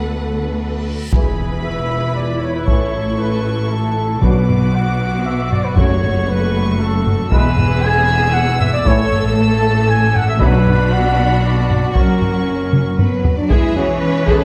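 Cut from a longer heroic, dramatic orchestral film cue in 3/4, this opens with lush bowed violins singing a clear, vibrato-rich melody over a second violin line, shadowy violas, cellos, double basses and distant French horn chords, before a huge reverse cymbal leads into an impact at 1.1 seconds that brings in close, heavy-stick taiko drums, roomy trumpet stabs and very quiet trombone chords, with round soft-mallet timpani joining in the background at 4.2 seconds. It is all set in a moderate scoring-stage reverb and capped by a drum fill at 12.7 seconds.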